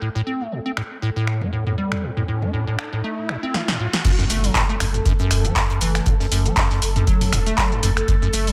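A squelchy, resonant square-wave acid bass riff sits up front with tube saturation, subtle chorus and tape echo in this raw, hypnotic acid house excerpt at 119 BPM in F# phrygian, with a swung 16th feel. Lush, vintage string-machine chords hold underneath with ensemble chorus and sidechain pumping, while a punchy analog drum machine, re-recorded in a large room, arrives at 0.8 s with snare, handclaps, finger snaps, hi-hat, shaker, toms and crash cymbal. A riser builds in the background toward a drop at 4.0 s, marked by an impact. There, a deep electronic kick and a very quiet tight funk drum kit with a high-tuned snare join over an F#m7 chord, and a round sine sub bass with sidechain pumping enters just after, all under light reverb.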